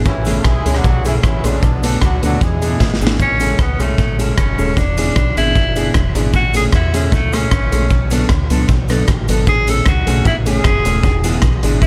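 A gritty, saturated garage drum kit sits up front in this cheerful, joyful ska passage, its punchy kick, snare, rim clicks and hi-hat ringing in a bright stone room with a pumping feel and a rolled-off top. A deep, round dub bass with a foam-muted tone anchors the straight 4/4 groove, while a dark, clean guitar and boxy, woody upright piano stabs sit in the background, with a grainy cabasa adding texture. At the start, a smooth horn section carries the melody in tight octave doubling with light vibrato, dressed in tape echo and plate reverb. After a drum fill from 2.8 seconds, a clear, distant tenor saxophone takes over at 3.2 seconds for a roomy solo with light vibrato, also colored by tape echo and plate reverb. The chords move between Amaj7, Bm7 and E7, and the clip is cut from a longer piece.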